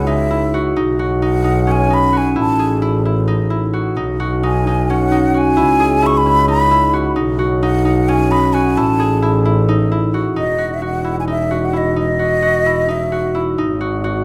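A breathy, tongued concert flute with vibrato sings an expressive melody over fingerpicked, ringing harp arpeggios and a nasal, gut-string double bass bowed in a period style, all three up front from the first moment. This urgent, hypnotic piece of contemporary chamber music, cut from a longer work, moves at 262 BPM in eighths in a straight 7/8 through C#m, B69 and A5 chords. The harmony shifts to Esus2 at 10.4 s, the flute falls silent at 13.4 s, and harp and bass carry on to 14.2 s within a moderate scoring-stage reverb.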